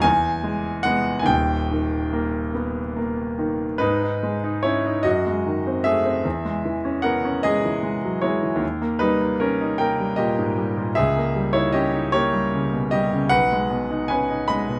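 This romantic classical character piece for solo piano is bittersweet and stormy, moving at a slow, lilting six-eight pulse that breathes with generous rubato. The grand piano sounds clear and natural, placed up front in a light reverb, and it ranges from deep bass notes up into the upper treble. A brief opening passage of about 3.8 seconds sets up the minor home key. A longer second passage then unfolds through shifting seventh chords and inversions before settling back onto the tonic chord near 13.3 seconds. The recording is a short cut from a longer work, ending at 14.8 seconds.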